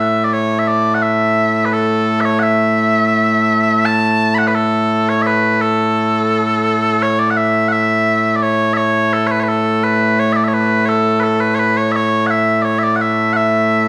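Stirring and ceremonial, this short cut from a longer piece of Scottish traditional pipe music moves at 85 BPM in a straight 2/4, set in A major. Mellow small bagpipes play solo and up front for the full 13.9 seconds, their sweet, continuous tone carrying vibrato across a range from A2 to B5. A large, wet studio reverb surrounds the pipes with a live-room glow as the tune passes from its opening strain into a second at 7.4 seconds.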